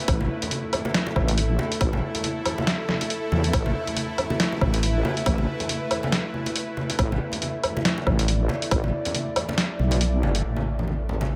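A swung half-time pulse at 139 BPM anchors this brooding, dark deep dubstep excerpt, where a heavy, saturated wobble bass with chorus sits up front beneath a tense, nasal bowed-like drone of sustained chords with vibrato and built-in reverb, while a tight, tape-toned electronic kick, a muffled, pitched-down sampler-style kit of hi-hat, snare and woodblock, and distant, ringing congas with dub echo fill out the rhythm in a light digital ambience until the kick drops out at 8.8 seconds.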